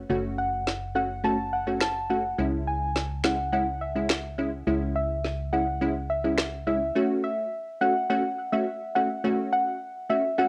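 A soft, round pluck carries the melody up front, its dark, wave-folded tone thickened by chorus and trailed by tape echo, all colored by the cassette tape processing of this bouncy, sultry dancehall cut from a longer piece. Beneath it, a crisp, detuned wavetable chord stab gives mellow, short-lived chords that move between F# minor and C# minor. A hollow, organ-like FM bass adds dark, percussive low notes. The drum kit of electronic snare, finger snaps and rim click sits up front with a woody snare, entering at 0.7 seconds and stopping at 6.5 seconds. The bass drops out at 6.9 seconds, leaving the pluck and chord stab to carry the closing section in a moderate studio reverb with a homemade tape character.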